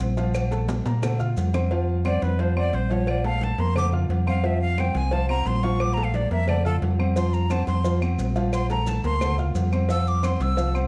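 Festive and danceable, this salsa clip cut from a longer piece moves in a straight four-four feel, with a dark production and a moderate large-studio reverb. A fingered electric bass sits up front, amped and round, while a vintage concert grand piano with a deep low end and short sustain supplies the accompaniment. In the background, distant congas with a thick skin, a low-tuned cowbell and bongos, ringing metal-shell agogo bells and timbales, woody claves and grainy maracas fill out the percussion, with a drum fill at 0.7 seconds. At 2.1 seconds a breathy, bright jazz flute takes a solo with vibrato and a crisp, chiffy attack, carrying the melody over chords that move between Bb and F. The mellow maracas drop away for a stretch and return at 7.2 seconds, shortly before a Bbmaj7 colours the harmony.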